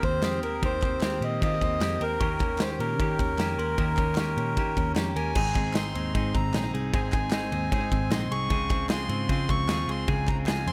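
Jangly indie pop at 152 BPM in Ab major, breezy and youthful, with a reedy, breathy melodica carrying the melody up front through a plate reverb while a ringing glockenspiel struck with hard plastic mallets adds a bell-like second line in the background until 5.3 seconds. A bright semi-hollow guitar plays picked accompaniment and a compressed, direct-recorded clean guitar picks arpeggios, both bathed in plate reverb, over a dark, foam-muted picked bass with a round, punchy tone. A big rock drum kit sits up front with bright cymbals and a boomy kick, joined by very quiet, crisp group handclaps as chords move from Cm7/Eb and Eb7 to Ab and Dbmaj7.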